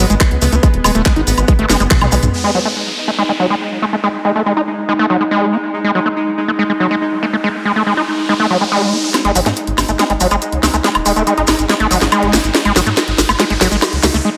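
A screaming, squelchy acid line, distorted and coated in chorus and tape echo, drives this intense psychedelic trance excerpt over a bright, pulsing gated pad of sustained chords that pumps with the sidechain. A tight electronic kick, a garage kit with a cracking snare, handclaps, toms, woodblock and filtered hats, grainy maracas and a round, deep analog bass play in the opening drop. The kick drops out at 2.0 seconds and the rest break off at 2.3 seconds, leaving the acid line and pad beneath a downlifter and riser. The kit, maracas and bass return around 9.1 seconds for a build-up with a drum fill and a filter sweep on the acid line.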